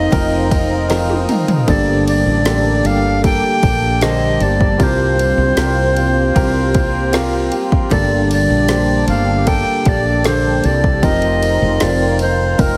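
A slow, melancholic pop ballad in G minor at 77 BPM opens with an airy, reedy tenor recorder carrying the longing melody up front, over a polished grand piano, a mellow French horn section playing a distant second line, a glassy FM pad with ensemble chorus and built-in reverb in the background, and quietly picked steel-string acoustic guitar arpeggios. A growly, round fretless electric bass sits up front, and a deep house drum kit with a punchy kick and woody snare enters at 0.1 seconds, with a fill at 0.9 seconds. The chords move through F7sus4, Gmadd9 and C7sus4 in a small room, and the whole track carries a heavily compressed, radio-like sound in this cut from a longer piece.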